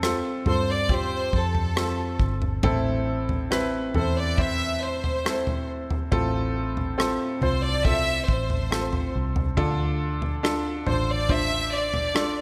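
This pop ballad moves at an unhurried 69 BPM in 4/4 with a straight feel, carrying an emotional yet hopeful mood through a passage cut from a longer piece. A natural-sounding grand piano sits up front with short sustain, accompanying a progression that moves from F to Am, then F/A, and finally Dm. Underneath, a vintage fingered electric bass gives a dark, round, punchy, foam-muted tone, while an acoustic drum kit played with bundle sticks adds a tight kick, rim clicks and toms in a small-room sound. From 0.5 seconds a close studio violin section carries the melody, bowed with light vibrato and a biting, intense ensemble edge that stays clear and forward. Light reverb and small room ambience give the whole arrangement an intimate setting.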